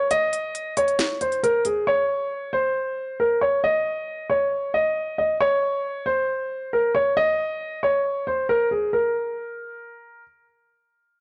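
Set in 4/4 at 136 BPM with a half-time feel, this brooding, menacing slice of hip hop and trap opens on a short break in which an electronic trap drum kit plays from 0.1 to 1.8 s. Its sharp snare, crisp hi-hat and handclaps sit up front with a tape-tinged, produced character. A dark grand piano carries the melody from the first moment until 10.2 s, moving between Ab4 and Eb5. Its mellow, shadowy tone is rounded off by a low-pass filter and placed close in the mix. The music shifts into a new section near its close, and the whole piece is tuned to A4 = 442 Hz. A light, small-room reverb and a dark, warm production that keeps everything under 10.6 kHz give this fragment, cut from a longer piece, an ominous glow.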